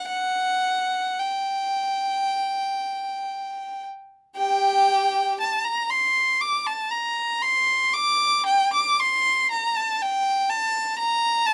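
A single bowed violin carries this solemn, flowing fragment, cut from a longer piece in the manner of a baroque-style suite movement for unaccompanied violin. Its tone is rich and focused, with a singing vibrato, and it sits close and up front as one player moving between G4 and D6. The pulse is in four but breathes freely in rubato, letting each phrase stretch and settle with grave dignity. An opening passage gives way to a contrasting second section at 4.4 seconds, which carries on to the close at 11.5 seconds. Light reverb and a dark production surround the instrument, lending the short passage a sombre, intimate glow.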